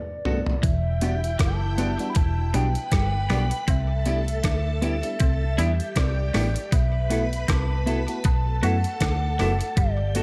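A hollow, woody synth lead with a clarinet-like tone opens this bittersweet lovers rock reggae excerpt, sounding over a short drum fill before the full band settles into a gently swung 4/4 groove from 0.6 seconds. The clean 12-bit drum machine sits up front with a thumpy, overdriven kick, hi-hat, rim click and toms, heard in a large room, while the dark, round, foam-muted electric bass anchors the low end just as prominently. A glassy FM electric piano with a bell-like attack, treated with chorus and phaser, fills in the harmony alongside compressed stabs from a semi-hollow electric guitar dressed in lush chorus. Further back, a twangy picked electric guitar plays a riff, and a mellow sawtooth string machine adds a sustained second line with ensemble chorus and tape echo. The chords move from Gmaj9 to Em7, Cmaj7 and B7sus4, and the lead's vibrato and tape echo heighten the longing mood in a dry, intimate mix.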